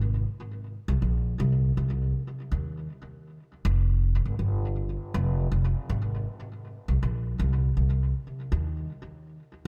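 The recording is dry, with little reverb around the single instrument. This reggae excerpt moves at 80 BPM in 4/4, with a 62% swing on the sixteenths and a spacious, heavy mood. An acoustic upright bass plays alone from 0.0 to 8.9 seconds, plucked pizzicato on steel strings and sitting up front in the mix. Its tone is woody and dark, ranging from F1 up to Eb2, and a tape echo trails behind the notes. The piece is tuned to A4 = 442 Hz, and the clip is cut from a longer performance.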